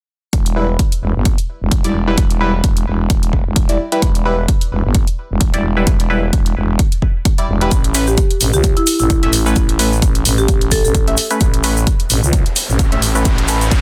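A growling, thick FM bass with overdrive and sidechain pumping sits up front in this aggressive, bouncy bass house excerpt at 130 BPM in E dorian, driven by a punchy, tape-warm electronic kick and a layered electronic hi-hat with a swung sixteenth feel. Nasal, band-passed sawtooth chord stabs, detuned and bright, move from Em to Aadd9 through phaser, delay and pumping. A grainy tube shaker joins at 7.7 seconds, a woody marimba plays a short delayed melody from 8.1 seconds, and an electronic riser enters at 12.4 seconds, all within a dry, dense, heavily limited mix.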